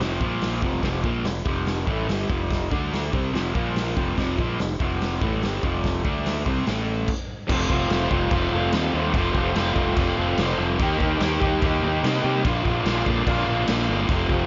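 A dark, overdriven, lo-fi, double-tracked garage guitar sits up front, picking a swaggering riff in F mixolydian at 145 BPM in a straight 4/4, moving through power-chord shapes and F, Eb and Bb changes. Beneath it, a fingered electric bass with round, punchy fuzz and an acoustic kit with a medium-tuned snare, crash and hi-hat ring out in a bright stone room. All three parts halt together at 7.1 seconds before the second section crashes back in at 7.5 seconds, the whole raw mix dressed in light reverb with a rolled-off, dusky top end.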